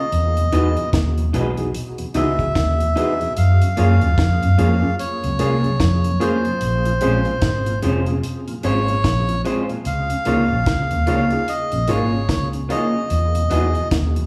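Lovers rock reggae at an easy 74 BPM in 4/4 with a gentle sixteenth-note swing, this short excerpt cut from a longer piece feels romantic and sweet. A reedy, breathy melodica carries the melody in a narrow range from C5 to F5, its nasal, mellow tone sounding vintage and band-limited. Underneath, a round, foam-muted fingered electric bass sits up front with a dark, amped sound, while a dry, dark reggae drum kit plays hi-hat, a tight kick and a high-tuned snare. A clean tine electric piano with tape echo sits in the background, an electric guitar through a small old amp adds slightly broken-up, lo-fi, compressed stabs with spring reverb, and a very quiet tonewheel organ with chorus vibrato and key click fills out the accompaniment. The chords move slowly from Emaj7 through Gbmaj9, Bbm9 and Db6 before returning to Emaj7 at 13.1 seconds, and the band sounds like it is playing live in one small room, bathed in a lush large studio reverb.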